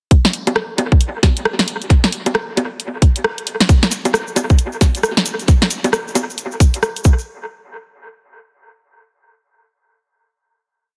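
Late-night and soulful, this short UK garage piece rides a swung two-step groove built from a tight, up-front electronic kick and a layered garage kit, soaked in dub echo, of skipping hi-hats, rim clicks, bongos and a cracking snare, with grainy, hand-played maracas joining at 3.7 seconds before the drop gives way to a final hit at 7.3 seconds in a lightly reverberant, echo-heavy mix.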